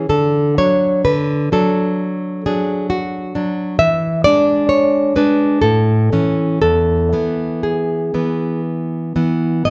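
Recorded with close, detailed microphones in a moderate recital-hall reverb, this brief, nostalgic excerpt from a romantic classical guitar piece features a solo fingerpicked nylon-string guitar, warm and up front, moving freely in rubato 3/4 at roughly 57-67 BPM across a range from E2 to E5, as its harmony passes from D through E7 to A and then E, with the instrument tuned slightly low to A4 = 439 Hz.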